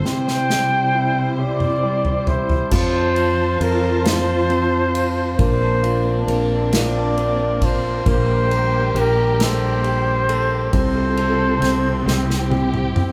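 Played live by a band in one room under a moderate large studio reverb, this tender, swaying six-eight pop ballad in F major at 45 BPM sets a mellow, vintage-toned flugelhorn melody with vibrato and scooped notes up front over clear, intimate concert grand piano with audible action noise, smooth-topped bowed strings with portamento, an airy acoustic drum kit played with bundle sticks that fills through the opening break until 2.7 seconds and again from 12.1 seconds, and a growly fretless electric bass that enters at 2.7 seconds, as the chords move from C through F, Bbadd9 and Gmadd9/Bb to F/C and back to C.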